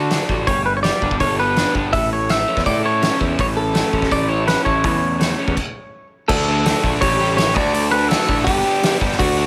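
Indie rock at 165 BPM in a straight 4/4 with a jangly, wistful mood, this excerpt from a longer piece pairs a twangy, compressed clean electric guitar melody sent through digital delay with a crunchy, double-tracked overdriven guitar riff, a growly overdriven picked bass, a roomy drum kit with a fat snare, tight kick and dark cymbals, and a very quiet, shimmering vintage string machine holding sustained chords from 0.5 s, all in light small-room ambience, before a stop from 5.6 to 6.3 s opens a new section that moves through D, A7 and G.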